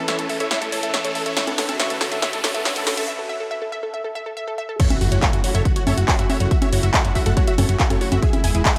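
Uplifting trance, driving and bittersweet, in a short stretch that runs from a build-up into the drop at 4.8 seconds. A dense, detuned supersaw carries the melody with vibrato, a low-pass filter and tape echo. Alongside it, a unison pluck spins arpeggios through dub echo, and a lush pad with chorus holds sustained chords; all three pump against the sidechain. A punchy analog drum machine, re-recorded in a large room and sitting up front, plays congas, handclaps, hi-hat, snare and crash through a drum fill and a brief break, while a riser and impact hover in the background. At the drop a heavy, layered electronic kick arrives, and a round, dark FM bass enters at 5.0 seconds, also pumping. The harmony moves from Aadd9 and Bmadd9 in the build to F#m7 at the drop, all set in light digital ambience.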